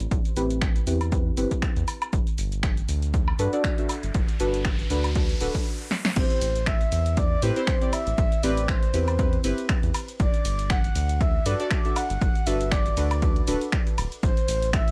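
The sound is dry and close, with an overdriven, punchy electronic kick sitting up front. This moody deep house excerpt moves at 119 BPM in 4/4 with a 55% swing on the sixteenths, in A dorian, alternating between Am7 and Gmaj7. A round, dark analog bass and a soft, full-bodied chord stab both pump against the kick, the stab carrying chorus, tape echo and a detuned edge while a filter sweep moves across it through the first 6.2 seconds. A layered drum kit, re-recorded in a small room, fills out the groove with a punchy snare, hi-hat, ride, shaker, finger snaps, woodblock and crash. A faint electronic riser enters at 3.0 seconds, the music stops briefly with a drum fill, and at 6.2 seconds the drop arrives. There a breathy, flute-like synth lead enters with vibrato, a sub octave, subtle chorus and tape echo, floating above the groove before the passage settles on Am.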